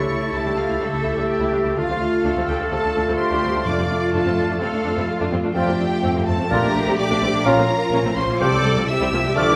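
A wet recital-hall reverb surrounds this dramatic, urgent excerpt from a fast romantic orchestral movement in D minor at 126 BPM, pushed and pulled with rubato as the harmony moves from A7/C# through Dm, F and Bbmaj7 toward a darkening Bbm and a final C. A rich, vibrato-laden violin section carries the melody high above, while a second violin section, a dark solo cor anglais, a hollow, airy flute group and a very quiet vintage clarinet weave supporting lines. Focused violas, a shadowy solo bassoon, a distant horn section holding chords, ringing thumb-plucked harp arpeggios, lush cellos and intense double basses fill the lower layers, and calf-headed timpani sound briefly from 3.7 seconds and again from 8.4 seconds.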